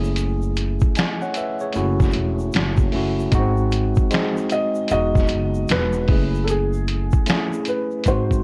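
A dry, close cassette-tape sound colors this short, melancholic and nostalgic lo-fi hip hop piece, which moves at 76 BPM in 4/4 with a swung sixteenth-note feel. A tine electric piano, clean and heard as if through its built-in speakers, sits up front under a low-pass filter, carrying chords that drift from F#m9 through G#7 and Emaj7 before returning to F#m9. A woody, dark upright bass played pizzicato stays low and up front. The compressed, pitched-down sampler-style drum kit sounds muffled and re-recorded in a large room, with a thumpy kick, a medium-tuned snare, hi-hat and finger snaps, while a grainy, bright egg shaker stays in the background. At 4.5 seconds a soft, intimate felt-muted upright piano takes the melody, its mellow tone further dulled by a low-pass filter, and a drum fill at 8.1 seconds closes the passage.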